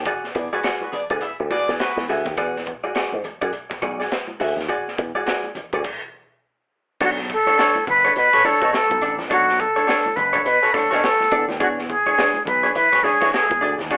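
Funky and cool, this swung sixteenth-note funk excerpt rides on a growly slap bass through an envelope filter, a clean, compressed hollow-body jazz guitar placed up front, a crisp fusion kit with a punchy kick and pumping room, and thick-skinned congas tucked in the background. Distant, roomy horns in octave doubling, with light vibrato, punch in briefly at the start, and after a stop at 5.8 s a breathy, straight-toned concert flute takes the melody at 7.0 s, with the horns returning at 8.3 s. The whole band sounds played live in one room with moderate reverb and a telephone-like tone, over E9, Bm9 and E13 chords.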